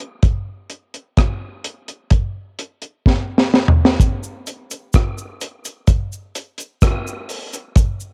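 A deep, dark reggae drum kit sits up front from the start, its high-tuned snare, tight kick, rim clicks, hi-hat and toms sounding dry with a rolled-off top, and a drum fill from 3.1 to 4.0 s closes the opening phrase. At 4.0 s a close, quiet cabasa joins in the background, adding a soft shaker texture. Light studio reverb and the soft grain of a home cassette recording give this short, meditative fragment, cut from a longer piece, a spacious, unhurried feel in straight 4/4.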